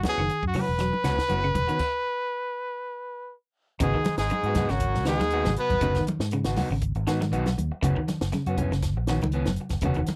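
A swung sixteenth-note groove at 120 BPM drives this intense afrobeat fragment in G# minor, cut from a longer piece. A compact cocktail drum kit with a punchy kick, high-tuned snare and dark cymbals sets the pulse alongside medium-tuned congas played with soft hands in the background, while very quiet woody claves click briefly at the start. A growly, amped fingered bass anchors the low end. Two electric guitars fill out the harmony: one slightly broken-up and twangy, picking arpeggios, the other through a small old amp, lo-fi and hitting short stabs. After a stop from 1.8 to 3.8 seconds, the music shifts from F#7sus4 to G#m7. A clear, up-front trumpet with vibrato and a smooth top carries the melody until about 6.0 seconds, and from 3.8 seconds breathy tenor and baritone saxophones add a second line beneath it, the baritone sitting further back. The sound is dry and close, in a 1970s studio style with light reverb.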